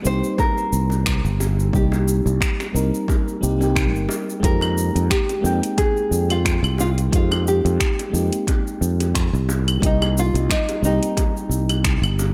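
A lightly swung 89 BPM groove in 4/4 drives this wistful, smooth sunset chillout excerpt in F minor, built on an overdriven electronic kick and a deep house kit of metallic hi-hat, cabasa, claves and finger snaps, with tight, high-tuned bongos set far back in a large room. A growly, punchy fretless bass sits up front beneath a soft, round, dark FM electric piano carrying chorus and tape echo, while a fingerpicked nylon-string guitar with audible finger squeak plays the melody through tape echo. The chords move from Cm7 to Fm11 at 4.4 seconds and back to Cm7 at 9.8 seconds, in a light reverb.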